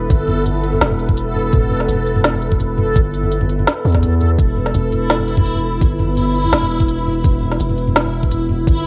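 A deep, up-front 808-style bass holds long sustained notes under a moody, pumping ambient pad with chorus, a reversed, granular swelling texture, a knocking electronic kick and an electronic kit of woody snare, crisp hi-hats and toms, giving this heavy, dark half-time drum and bass excerpt a light-reverb, home-cassette sound.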